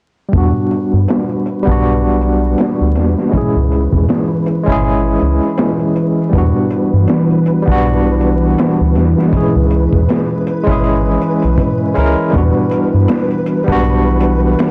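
A barky, bright tine electric piano sits up front in this brooding, dark trip hop excerpt, its tremolo, tape echo and low-pass filter caught in a filter sweep that runs across the whole passage. Beneath it, a round analog bass with a fast attack and wave-folded tone carries the low end, while a crunchy breakbeat kit of tight kick, medium-tuned snare and hi-hat swings on sixteenths, each piece filtered to a rolled-off, saturated haze. A deep, moody pad of detuned sawtooth and sub octave enters at 2.6 seconds in the background, blurred by chorus, reverb and a vintage 12-bit sampler grit. From 0.8 seconds a faint flickering, grainy granular texture hovers high on a single note, mellow and washed in reverb. The harmony sways between Em7 and C#m, and the whole recording is blown-out and overdriven, dusted with vinyl crackle in a small room.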